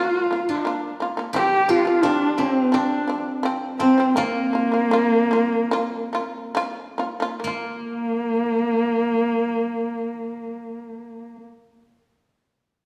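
Heard through a wet recital hall reverb and small room ambience, this short cut from a longer Mongolian folk piece moves at 66-88 BPM in a galloping, proud mood and slows between 1.3 and 7.4 seconds, as an up-front, husky horsehead fiddle carries the bowed melody with vibrato and portamento, a buzzing, percussive shamisen plucks arpeggios, and a silvery steel-string zither rings out a quieter second line.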